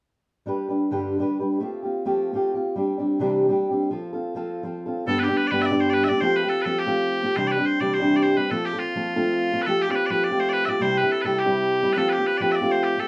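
Heard from further back in a small, wet-sounding room, this bright and cheerful Celtic folk passage at 209 BPM, with a light swing on the eighths, opens on a warm fingerpicked steel-string acoustic guitar cycling through G, Fadd9, Cadd9 and F before piercing, continuous bagpipes enter up front at 5.1 s to carry the melody until the cut at 13.1 s.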